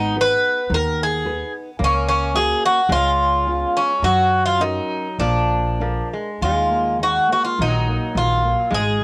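A mournful, longing fado-style ballad in a free, rubato 4/4, this excerpt puts a bright, up-front Greek bouzouki on the melody with its metallic double strings, joined by a nasal metal-body resonator slide guitar played with fingerpicks as a second line, while a dark, full-bodied nylon-string guitar fingerpicks the accompaniment in the background with audible finger squeak and a woody, thumpy pizzicato upright bass anchors the low end, all caught in a small booth on a home cassette recording with plate reverb on the bouzouki and slide guitar.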